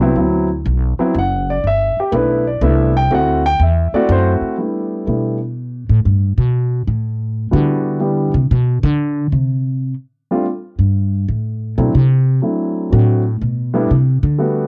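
Warm and sophisticated, this short jazz piano trio excerpt swings in 3/4 at 122 BPM in G major, with a grand piano carrying the melody and a pizzicato upright bass underneath, both up front in a small room on a home cassette recording that lends the piano a taped character. The piano takes the spotlight first, then from 4.6 seconds the woody, thumpy, steel-strung bass has its solo turn through to the end at 14.7 seconds. Rich harmony colors the passage, moving through chords such as D13, G6, Em9 and Gadd9.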